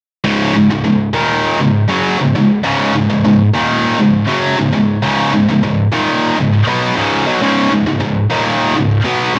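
Metal at 100 BPM, dark and aggressive, this short excerpt features a lone heavy high-gain electric guitar, picked and double-tracked, sitting up front from 0.2 seconds onward with a bright, distorted bite colored by tape echo and a moderate studio reverb, all within a dark, warm production.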